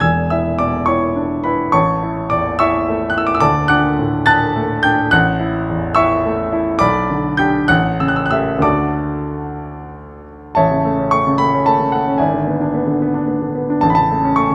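A polished, up-front grand piano carries this lyrical romantic character piece alone, its rubato phrasing in 6/8 ranging from deep bass to bright treble, with a moderate recital-hall reverb and a shift to a new harmonic area at 10.6 seconds before this brief passage, taken from a longer work, breaks off at 14.5 seconds.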